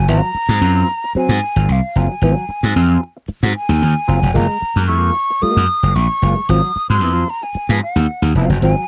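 Funk at 113 BPM with a funky, cool mood, cut from a longer piece, where a breathy, hollow silver concert flute carries the melody high with vibrato and slapback echo, a dark, clean electric guitar adds fingered wah accompaniment, and an overdriven, punchy slap bass sits up front over Ab13 and Gbmaj9 chords in a dry, close 1970s-style studio sound with vinyl crackle.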